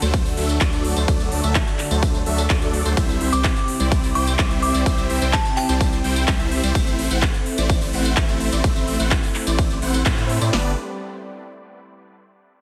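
Festival progressive house with a triumphant, uplifting mood, this cut from a longer piece opens straight into the drop, driven by a straight groove in 4/4. Two layered big-room electronic drum kits carry it: one sits up front with a punchy kick, punchy snare and crisp hats, while the other adds handclaps, ride cymbal and tambourine, both tape-warm and re-recorded in a large room. A deep, saturated sine sub bass and a huge, detuned supersaw riff with phaser and dub echo pump against the kick, backed by a thick, warbling vintage pad holding sustained chords in the background. Between 3.3 and 6.2 seconds a crystalline FM bell melody appears, bright and decaying, with chorus, tremolo and dub echo. The harmony moves from D through C and Am, and a band accent hits at 10.1 seconds just before it lands on G, all set in a moderate hall reverb with a heavily compressed, radio-style sound.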